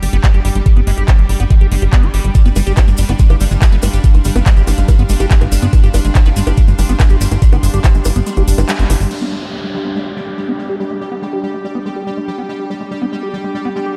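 A driving, psychedelic trance passage opens on a pulsing, tempo-synced gated texture of bright sustained chords, an airy, breathy pad and a squelchy, resonant acid bass riff, all pumping to a knocking, up-front electronic kick, a punchy, funky analog bass and a drum kit of metallic hats, bongos, crash and handclaps, with a grainy tube shaker joining in the background at 2.3 seconds. The kick drops out shortly before the bass, drums and shaker fall away at about 9.1 seconds, and a downlifter and a filter sweep on the acid bass then carry the final seconds alongside the gated texture and pad in light digital ambience.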